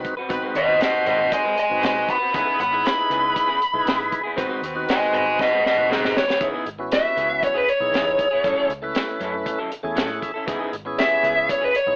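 A smooth, overdriven lead guitar sits up front in this mournful, soulful straight-eighth soul blues at 118 BPM in C# minor, carrying the melody from 0.6 seconds and taking a solo from 6.4 seconds over chords moving between G#7#9, C#m7 and F#m7. Beneath it, a full tonewheel organ with key click and slow rotary speaker supplies accompaniment and a brief fill, a slightly broken-up guitar through a small old amp adds background stabs, and a bright, loose horn section with octave doubling holds sustained chords until 5.6 seconds. A crunchy, gritty breakbeat kit with a high-tuned snare and punchy kick plays a fill leading into the solo, a round, foam-muted fingered bass sits low in the mix, and the whole cut carries light reverb and a telephone-like sound.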